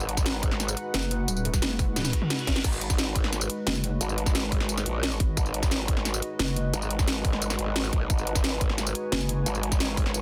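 A straight 4/4 groove at 176 BPM drives this dark technical drum and bass cut, futuristic and aggressive, sitting on G# minor throughout. An up-front electronic kick, tight and overdriven, enters at 0.2 s and anchors a layered kit of cracking snare, bright hats, crash, tambourine and toms, with a drum fill around 2.0 s met by a brief reverse cymbal in the background. Up front in the mix, a growling, formant-filtered bass wobbles with saturated bite and chorus, while a heavy, detuned pulsing pluck bass joins at 0.9 s and returns briefly near 9.1 s. Behind them, a deep, moody pad of sustained sawtooth chords with a sub octave breathes under sidechain pumping and its own reverb. A warbling, nostalgic lo-fi pad built on square and triangle tones with ring modulation drifts above, also pumping and reverberant. The dense, heavily limited master carries light reverb, and this short section is cut from a longer piece.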